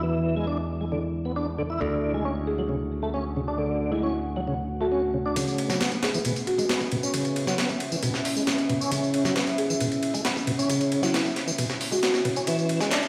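A straight 4/4 breakbeat groove at 135 BPM in C# phrygian, gritty and funky, opens on an up-front tonewheel organ riff, lightly overdriven with chorus vibrato and slow rotary speaker. Beneath it sit a bright picked electric bass and a deep, detuned ambient pad under a filter sweep and sidechain pumping, while a buzzing, woody marimba carries the melody with AM-radio tone and 12-bit sampler grit from 2.5 seconds. At 5.4 seconds the bass stops and a compressed, overdriven sampler-style breakbeat kit with a thumpy kick arrives alongside layered electronic tambourine and handclaps, starting a build-up as the organ takes its own filter sweep; the chords move from E7 and Dmaj7 to C#m7, ending on E13, heard through a stone room reverb as if played on a big sound system in a bare room.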